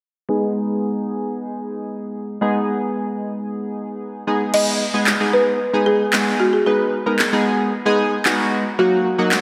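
Confident yet bittersweet, this dance-pop excerpt moves at 113 BPM in a straight 4/4 in G# minor, set in a dreamy mix soaked in lush hall reverb. It opens at 0.3 seconds with chorused retro synth keys alone, a glossy, detuned blend of pulse and sawtooth waves with fast, decaying notes, while a filter sweep keeps the sound evolving through the first section. At 4.5 seconds a folk marimba takes the melody, its hardwood bars struck with medium mallets giving a woody, rustic tone that is treated with analog delay. A punchy analog drum machine enters at the same moment, sitting up front with a tape-warm snare, handclaps and crash cymbal that carry a small-room character. The harmony rests on G#m before shifting to D#m/F# near the end of the excerpt.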